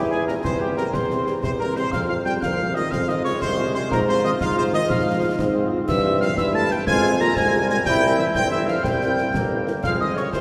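Stern and martial, this short cut from a longer military-style march for wind band moves in a straight 6/8 stride over a minor-key progression that returns firmly home at 9.8 seconds. A clear, tight trumpet section carries the melody, with a dark, softly vibrato euphonium and a mellow, wooden-toned piccolo adding second lines, while a vintage-sounding trombone section sustains chords, a very quiet horn section fills in accompaniment and a clear tuba anchors the bass. Concert snare, bass drum and bright clash cymbals enter at 0.3 seconds, close and dry against the otherwise cavernous cathedral reverb of a church or concert hall.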